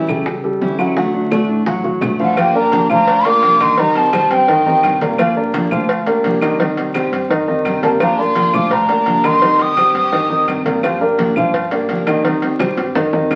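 A breathy, hollow jazz flute leads this nostalgic, danceable Cuban son and guajira excerpt at 170 BPM, sounding at 2.2 and again at 7.8 seconds over a distant chamber violin section, an up-front dark baby grand playing arpeggios, a full-bodied picked steel-string acoustic guitar with finger squeak, a tine electric piano bass with medium tremolo, woody claves, congas, and round bongos and cowbell, all heard through wet studio reverb and the crackle of a very old 78 rpm record.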